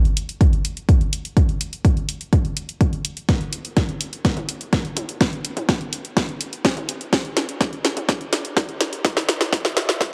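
A dark production with light reverb opens this melancholic yet driving melodic techno passage, cut from a longer piece, and the whole span from 0.0 to 10.1 seconds works as a build-up under a continuous filter sweep. Up front, a layered electronic drum kit of filtered hi-hats, a cracking snare and toms is joined at 0.4 seconds by a heavy electronic kick, both re-recorded in a large room. From 3.3 seconds a drum fill runs to the end, pushing the straight 4/4 pulse onward.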